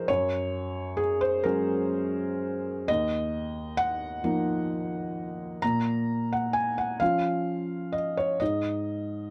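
A felt-muted upright piano plays alone from the first moment, soft and mellow, with its action noise audible in a close, dry, detailed sound that keeps it up front. This brief excerpt of reflective, intimate neoclassical minimalist piano moves in a slow, rubato 6/8 at about 43 BPM, tuned to A4 = 439 Hz and spanning Eb2 to Bb5. The harmony moves through Gbadd9, Ebmadd9 and Bbm before the chords stop at 8.4 seconds.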